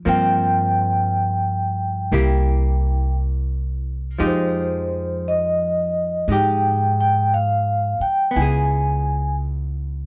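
A dark, clean hollow-body electric guitar opens this tender, romantic jazz ballad at a slow 58 BPM with a gentle swing, joined almost at once by a thumpy, woody pizzicato upright bass on gut strings and a mellow, ringing vibraphone played with soft mallets and medium motor vibrato that carries the melody up front until 9.3 seconds, all captured in a dry, close 1970s-style studio sound as the harmony moves from Gm7 through C7 and Fm9 to Dbm7 in this short cut from a longer piece.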